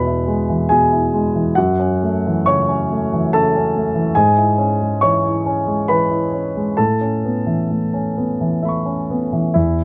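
Peaceful and tender, this brief neoclassical minimalist piano fragment, cut from a longer piece, unfolds in a gently rubato 3/4. A solo concert grand sits up front, its deep bass and warm tone spanning a broad register as the harmony moves from E through F#m7 and C#m/G# to Aadd9 by 6.8 seconds. Light reverb gives the space a soft, airy halo.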